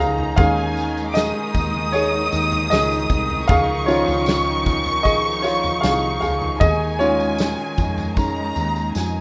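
A tender, heartfelt pop ballad fragment in Db major at 77 BPM opens with a polished, up-front baby grand piano carrying the lead over a sul tasto chamber string section holding soft, intimate chords and a dark, growly fretless bass treated with analog chorus, while a lush symphonic violin section sings a focused second line high above through tape echo. A modern studio drum kit with a punchy kick and medium-tuned snare joins at 0.2 seconds, a jingly tambourine sits in the background, and the harmony rests on an Absus4/Eb chord before a drum fill at 8.9 seconds. The sound is a rough home demo mix with light reverb and small room ambience.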